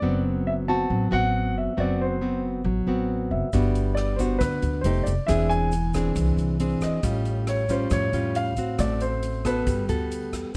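A dry, dark production frames this short bossa nova fragment, which moves at 137 BPM in a straight 4/4 in G major with a sophisticated, sunny mood. Up front, a nylon-string guitar is fingerpicked in a classical manner, its dusky tone carrying audible finger squeak, while an upright bass plays pizzicato with a woody, thumpy sound from its steel strings. Above them, a warm grand piano carries the melody in a higher register. At 3.5 s a swinging big-band drum kit joins with hi-hat, rim click and a punchy kick, sounding airy and polished in a hall, alongside a grainy, mellow tube shaker tucked into the background. The harmony opens on a rootless D13/F#, settles on Gmaj7, and passes through F9, Eaug7, A7alt and Am69 before landing on Gmaj9.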